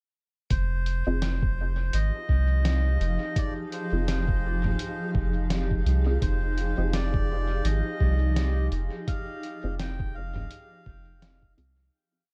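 A deep, round sub bass sits up front throughout this ambient dub piece, carrying a soft dub-style line that anchors its hazy mood. Beneath it, a muffled, thumpy electronic kick keeps a slow pulse with a gentle swing. A lo-fi sampler-style kit adds a sparse echoing beat of closed hi-hat, low conga and a medium-tuned snare, both drum parts pitched down and tape-coloured as if re-recorded in a small room. A reedy, breathy melodica plays a nasal, band-limited motif of call phrases bathed in dub echo. From 1.1 seconds a muted, detuned chord stab punctuates the background with short, sparse echoing hits, moving one shape in parallel through phaser, chorus and echo, and from 1.9 seconds a cloudy granular pad drifts in with bright, slowly shifting chords carried by its own reverb. The production is dark and fairly dry, and the groove fades out from 8.1 seconds to the close.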